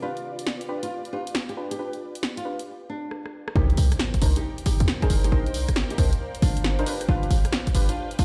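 A moody, skippy two-step UK garage cut at 136 BPM in C minor, where fingerpicked flamenco guitar with delay spins a melody over deep, warbling chorus-and-dub-echo chord stabs, a silky string machine pumping in the background and a faint ethereal pad with phaser, while tape-warm analog drum machine hats, rim clicks and snare skip along until a drum fill at 3.1 seconds leads into the drop at 3.6 seconds, bringing in a punchy kick, a tight sidechained 808-style bass and a distant electronic impact, all ringing through a bare stone room.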